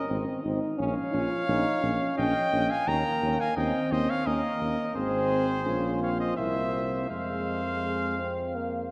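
A mellow cornet with light vibrato carries the melody up front in this solemn, grave classical brass quintet fragment in F minor, moving at a rubato 86 BPM in 3/4, with a flugelhorn on the second line, a vintage-toned French horn and euphonium in the background, and a dark, punchy tuba bass, all bathed in wet cathedral reverb as the harmony moves from Ab and Bbm through C7 to a closing Fm.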